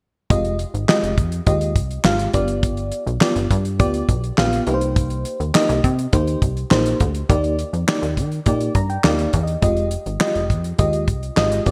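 Late-night and danceable, this excerpt of early-eighties boogie funk in F dorian moves at 103 BPM in a straight 4/4, with a mellow, round FM electric piano wrapped in chorus laying chords from Fm9 through G7, Cm7 and Ebmaj7 and adding a fill at 8.5 seconds, a punchy, plucky analog bass with a sawtooth filter snap, and a damped 70s drum kit of handclaps, hi-hat, tight kick and fat snare sitting dry and dark under gated reverb, all in a bright digital production with light studio ambience.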